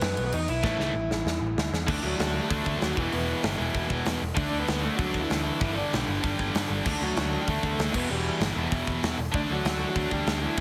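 Raw and angry, this punk rock fragment charges along at 193 BPM in a straight 4/4, cut from a longer piece. It opens in half time, with the big rock drum kit playing a fill from 0.6 to 1.9 seconds before the next section takes over. The kit sounds acoustic and up front in a big room, with bright cymbals, a medium-tuned snare and a punchy kick driving crash, hi-hat, kick and snare. Underneath, the picked electric bass growls with an amped, bright edge, while a crunchy overdriven guitar carries the melody with a warm tone colored by tape echo. From 0.6 seconds two distorted guitars join on the riff, one tight and up front, the other sitting in the background, pushing through chords that move among D, E5, G5 and Em. Light reverb and a heavily compressed, radio-like sound give the whole clip a squashed, aggressive punch.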